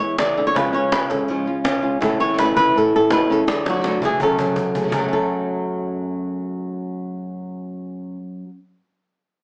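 Two fingerpicked flamenco guitars open this fiery, mournful flamenco fragment: an up-front, dark-toned lead carries the melody with audible finger squeak, while a quieter, warm second guitar punctuates with stabs. A woody, distant cajón with faint snares joins at 0.2 seconds, plays a fill from 3.5 seconds and drops out at 5.0 seconds as the passage moves into a new section. The guitars continue on, heard as a band playing live in one room with moderate large-studio reverb and a small-speaker sound.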